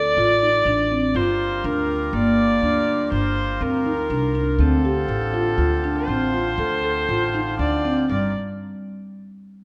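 A dark, nasal bowed viola with light vibrato carries a second line over round, woody soft-mallet marimba arpeggios and a thumpy pizzicato upright bass, and at 1.1 s a breathing, reedy hand-pumped harmonium joins with sustained chords, shading this urgent, pensive contemporary chamber piece in G minor, moving between Dm7 and Gm7 at 122 BPM in an uneven 7/4, set in a reverberant recital hall and cut from a longer work.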